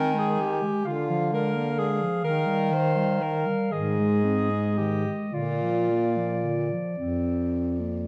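Serene and lyrical, this classical fragment for single-reed quartet drifts in a rubato 6/8 at roughly 35-43 BPM, with a clear clarinet singing the high melody over a clear, up-front alto saxophone second line that drops out at 6.9 s, a dark clarinet accompaniment in the low register, and a warm, up-front baritone saxophone bass touched with light vibrato, set in a moderate recital-hall reverb with a dusky production as the harmony moves from Ab/Eb through Bb7/D and Eb to Ab and Bb.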